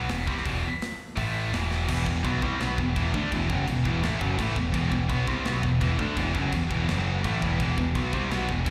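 Straight 4/4 at 168 BPM drives this heavy, epic heavy metal passage in E minor, with two bright high-gain guitars carrying distorted, slapback-echoed riffs over an up-front, overdriven growling bass and a tight, polished, airy drum kit, until a drum fill at 1.7 seconds drops the band into half time at 1.9 seconds as a dark, double-tracked sludgy guitar joins in the background, the performance heard live through the venue's PA with recital-hall reverb.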